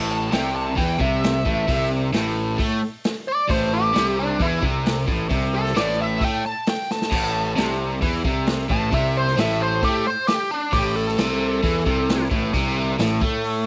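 Blues rock power trio with a southern rock edge, this smoky, gritty excerpt at 133 BPM in A minor sits on a single A minor chord as a crunchy, bright, double-tracked overdriven rhythm guitar riffs up front, a growly fuzz-drenched picked bass anchors the low end, a dark, smooth lead guitar with wah and overdrive solos throughout, and a natural-sounding vintage acoustic kit with a tight kick and medium-tuned snare drives the straight 4/4 feel, adding a fill at 6.9 seconds, all captured in a small room with a rounded, dull-topped tone.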